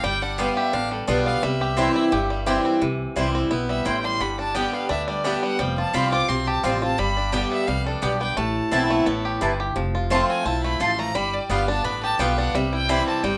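A moderate studio reverb gives this short clip, cut from a longer bluegrass piece, a natural sense of space. Its mood is virtuosic and rustic, with a light swing to the eighth notes. A clear, focused fiddle carries a solo throughout, bowed by one player with light vibrato and heard close. Up front, a bright, boxy acoustic guitar picks swing-style accompaniment on fresh strings, with finger squeak audible. A twangy banjo played with fingerpicks adds percussive arpeggios, and a woody, thumpy upright bass on gut strings plucks the low end. From 0.4 seconds a picked mandolin adds bright, woody double-string stabs over changes that move from G7 to C before closing on G7 and C.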